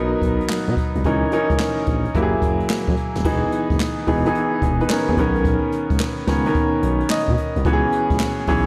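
A clear, up-front concert grand piano plays the accompaniment in this confident, slick new jack swing excerpt at 109 BPM, playing chords such as Bmaj7, C#m69 and Emaj7 over a swung 16th-note feel and adding a fill at 6.8 s. Beneath it, a smooth synth bass of wave-folded sawtooth and triangle tones glides between notes with vibrato. A brush-played acoustic kit with dark cymbals, handclaps and a boomy kick sits close in the mix, and the recording is bathed in a long concert hall reverb that gives it a big arena sound.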